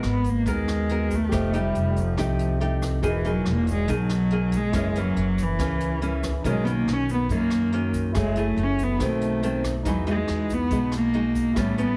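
Smooth and melancholic, this bossa nova fragment moves at 140 BPM in 4/4, led by a dark, bowed solo cello with vibrato, sitting up front over fingerpicked classical nylon-string guitar, a warm grand piano in the background and a woody pizzicato upright bass. A jazz kit played with brushes adds hi-hat, rim click and a boomy kick, while a grainy, bright tube shaker joins at 0.3 s, close and dry behind the band. Rich jazz chords such as G#m9 and Emaj9#11 drift beneath the line, and the whole sound carries light reverb and a heavily compressed, radio-like quality.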